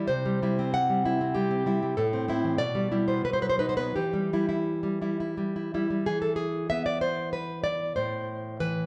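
Set in a moderate recital-hall reverb with nothing above 10.3 kHz, this melancholic, wistful excerpt of a romantic piece for solo classical guitar in E minor features an up-front, bright, full-bodied nylon-string guitar, fingerpicked in a rubato 3/4 at around 84-99 BPM, that moves from C through Am and B to rest on Em before turning to a new section at 6.0 s over E5 and Am.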